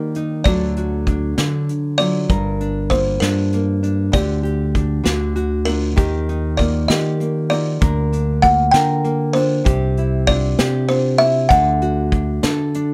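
Swaying in a straight 6/8 at 65 BPM counted in dotted quarters, this intimate, reflective acoustic folk passage in G harmonic minor is carried by soft brushes on a natural, small-room drum kit with a punchy kick and medium-tuned snare, which enters at 0.1 s. A buzzing kalimba with a woody, hollow-box tone and short thumbnail plucks sings the melody with a vintage, band-limited character, over a full-bodied, fingerpicked nylon-string guitar whose deep classical voice carries audible finger squeak, and a warm fingered electric bass heard direct and amped. All four parts sit up front in a dry, close and detailed recording, moving through chords such as Gm, Dsus4, Eb and Cadd9 before landing on D.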